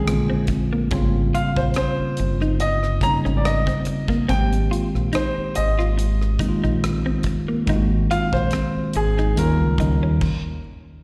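At 71 BPM in 4/4 with a light swing on the sixteenths, this soulful neo-soul R&B excerpt in Ab major rides a damped 70s drum kit of tight kick, rim click, hi-hat and dark crash cymbal under a deep, round, punchy fingered electric bass sitting up front. A worn, slightly out-of-tune tine electric piano through a combo amp comps with slapback echo, a clear, natural grand piano carries the melody, and a dark, picked clean electric guitar adds a second line coloured by analog chorus and slapback echo, over chords moving from Bb9 and Eb13 through Abmaj9 and Ab9 to Eb9. Heard as a live gig through the venue's PA with recital-hall reverb and small-room ambience, the band drops into a stop at 10.2 s.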